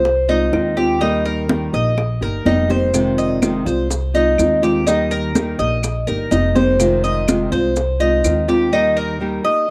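Sultry and nostalgic, this Cuban son and guajira passage, cut from a longer piece, puts a bright, metallic Cuban tres up front picking arpeggios on its double strings over a small, fingerpicked nylon-string guitar and a dark pizzicato upright bass, while high-tuned congas, tight bongos and woody claves sit in the background and grainy maracas join at 2.9 seconds, all moving between Fm7 and Eb with a moderate spring reverb and the small-room ambience of a home cassette recording.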